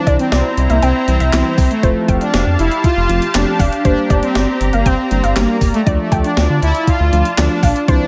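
A brassy, fat synth lead carries the melody over a worn, slightly out-of-tune tine electric piano and an airy, detuned pad with chorus, setting a driving, nocturnal synth-pop mood at 119 BPM in D minor. From 0.1 s a round, deep analog bass, a lo-fi, warbling pluck line with chorus and delay, and a thumpy, overdriven 12-bit drum machine with gated reverb on its kick, snare, hi-hat and handclaps join in. The chords move from C7 through Fadd9 and Gm to Dm in this short cut from a longer piece, with the bass, brass and drums sitting up front in a light reverb.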